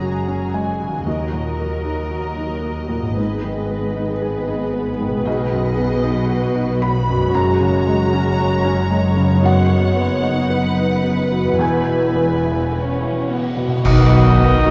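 A soft, intimate felt-muted upright piano with audible action noise anchors this moving, uplifting cinematic film-score excerpt in B major at a rubato 57 BPM, where veiled con sordino violin sections carry the melody and a second line over background violas, cellos and distant, lush double basses. A very quiet thumb-plucked concert harp rings out arpeggios, dark cymbals, clash cymbals and concert bass drum enter at 9.4 s, and at 13.9 s a clear solo oboe, a mellow clarinet and a dark, roomy French horn section join for a brief closing accent, all bathed in wet scoring-stage reverb.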